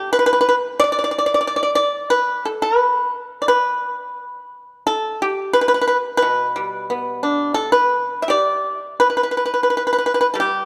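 A solo pipa carries this short piece of Chinese traditional music, its mellow, percussive tone sitting up front and dry, plucked with fingerpicks. The mood is serene and flowing, with a rubato feel loosely centred around 84-92 BPM in 2/4. The instrument's range reaches from B2 up to E5, and it is tuned slightly below standard pitch, with A4 at 436 Hz. A light reverb surrounds the acoustic playing, while the pipa itself keeps its close, unadorned character. The opening section runs to about 9.0 seconds before a new section begins, and the fragment, cut from a longer piece, ends at 10.7 seconds.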